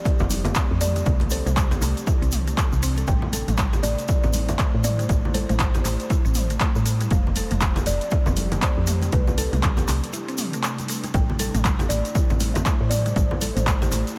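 This lightly reverberant mix opens an excerpt of warm, driving afro house at 119 BPM in A minor, with a 60% swing on the sixteenths. An overdriven, layered, punchy electronic kick sits beside a deep house kit of handclaps, hi-hat and toms that shares the same grit, while ringing congas from a small room and a grainy, bright tube shaker fill the background. Underneath, a round, dark FM bass pumps with sidechain, and a mallet-like synth pluck plays chorused arpeggios through a diffuse ambient delay. An ethereal, airy pad holds slow-attack chords with ensemble chorus and its own reverb, also pumping, as a buzzing kalimba with a hollow-box, fingertip tone picks out a soft melody through its own delay. The harmony moves from Fmaj7 through C, Am and F to Cmaj7(no3), with a brief break at 10.1 seconds before settling on Am7 at 11.1 seconds.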